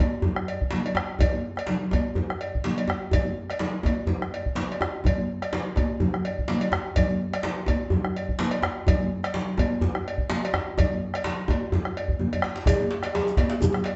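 Driving and earthy, this West African drum ensemble excerpt moves at 126 BPM in 4/4 with a light swing on the sixteenths, built on a deep, dark bombo, a metallic cowbell, ringing high-tuned congas played with soft hands, and a tight, cracking djembe struck with hard hands. A short drum fill at 12.1 seconds leads into a new section at 12.7 seconds, where a second, vintage-toned, band-limited djembe and a grainy, mellow shekere join. The band plays live together in one room under a wet studio reverb, with a dull top end.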